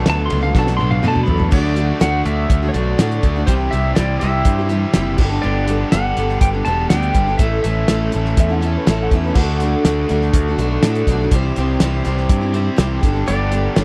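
Nostalgic and open-road, this folk rock and heartland rock passage opens with a pedal steel guitar solo over a drum fill, with a bright, up-front picked electric bass underneath, before a cloth-damped, thuddy drum kit with a fat snare and dark cymbals and the bass settle into a straight 4/4 groove. Picked steel-string acoustic guitar and a double-tracked, overdriven electric guitar riff fill out the band, while the clean, fingerpicked pedal steel carries the melody with slide and volume swells. A woody upright piano adds a brief background line at 8.4 seconds, and a very quiet, flute-like tonewheel organ with rotary speaker returns at 9.4 seconds, all in a dry, close 1970s-style studio sound.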